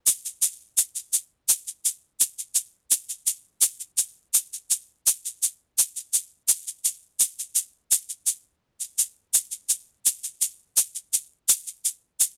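A dry, close studio sound in a 1970s style gives this short folk passage, cut from a longer piece, a close, up-front feel. A grainy, bright egg shaker carries the percussion at 84 BPM in a straight 4/4, entering at 0.1 seconds and continuing through 12.4 seconds. The mood is anthemic and warm, with the acoustic shaker sitting close to the listener throughout.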